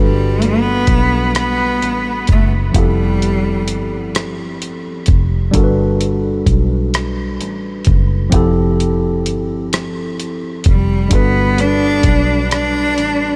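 A slow, straight six-eight groove at 43 BPM in dotted quarters sets a tender R&B mood in G major, in this excerpt cut from a longer piece. A dusty, sampler-style drum kit sits up front with hi-hat, rim click and a thumpy kick, its sound compressed and gritty. A fingered electric bass holds the low end with a dark, round, foam-muted tone, while a worn tine electric piano, lightly overdriven through a combo amp and slightly out of tune, carries the accompaniment over a gentle alternation of Gmaj9 and Fmaj9. A single bowed cello takes the melody up close and prominent, nasal and biting with vibrato and an airy bow, singing until 4.1 seconds and returning at 10.7 seconds. The whole mix is soaked in a huge ambient reverb with a 7.7-second decay, giving it a dreamy, suspended glow.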